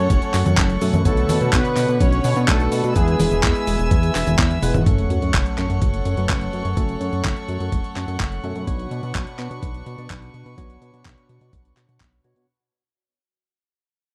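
Italo disco at 126 BPM in F# minor, nostalgic and danceable, cut from a longer piece. A bold, nasal analog synth brass lead carries the melody through the opening 4.3 seconds, fat and chorused with vibrato, cassette-tape grit and tape echo. Beneath it a glossy, dark chorused synth bass built from pulse and sawtooth waves plucks and sustains. A worn, slightly out-of-tune tine electric piano plays filtered stabs in the background. A distant chamber string section holds soft, floating chords as the harmony moves from F#m to Bmadd9 and E. A gritty, overdriven sampler-style soul kit of hi-hat, handclaps, congas, cabasa and toms joins a thumpy electronic kick, and a drum fill at 4.5 seconds leads into an electronic sub drop at 4.9 seconds as the music fades out to the end, all in a dry, close 1970s-style studio sound.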